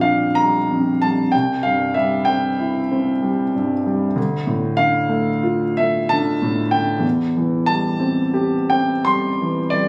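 Serene and nostalgic, this short excerpt from a longer romantic nocturne for solo piano unfolds in a slow, flexible 9/8, with dotted-quarter pulses falling between 54 and 66 BPM and shaped by generous rubato. A single concert grand carries everything, spanning from Bb1 up to C6, its tone warm and smooth with a deep bass and a vintage, intimate character. The instrument sits up front, close enough that the mechanical noise of its action is audible beneath the notes. The harmony drifts from Gm7/Bb to C at 1.3 seconds, settles on Dm at 4.2 seconds, and moves to C/E at 7.0 seconds. A moderate studio reverb with a 1.1-second decay lends a sense of a large room around the piano, though the capture itself was made on a phone in the room. The tuning sits slightly high, at A4 = 443 Hz.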